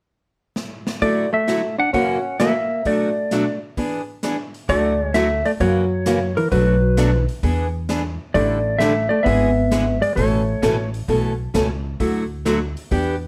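A moderate studio reverb surrounds this cheerful, down-home western swing excerpt in D major, moving at 131 BPM with swung eighth notes. After a short drum fill, a twangy, bright lap steel carries the slide melody up front while a dark hollow-body jazz guitar plays a second line beneath it and a boxy parlour acoustic guitar picks out the chords, all entering at 1.0 seconds. An airy, polished big-band kit with a punchy kick keeps the time, and a woody, thumpy upright bass on gut strings joins at 4.7 seconds.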